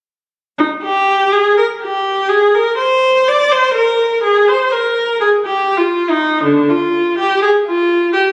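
A solo viola with a warm, smooth vibrato carries this serene, flowing baroque-style suite movement, played by one bowed player from 0.6 to 8.2 seconds between D3 and D5. The tone is even and sits up front, though it has a slightly distant quality, and moderate recital hall reverb adds a 1.4-second tail. In a rubato 3/4 around 62 BPM and tuned to A4 = 439 Hz, this phone recording captures a passage cut from a longer piece.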